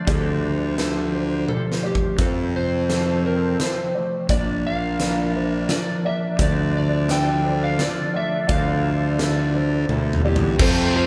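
Post-rock in a hopeful, euphoric 3/4 at 86 BPM, this cut from a longer piece moves through Dm, F and Bb as a dark, slightly broken-up electric slide guitar sings the melody over airy, vibrato-laden sustained chords from a large flute ensemble, soft felt-muted upright piano arpeggios with audible action noise and digital delay, clean phased arpeggios from a mellow electric guitar in the background, a growly fuzz bass up front, and a huge arena drum kit with a fat snare and punchy kick that plays fills at 1.5 and 9.9 seconds, before a bright overdriven electric guitar riff bursts in at 10.6 seconds, all set in a large, reverberant room where the band plays live together.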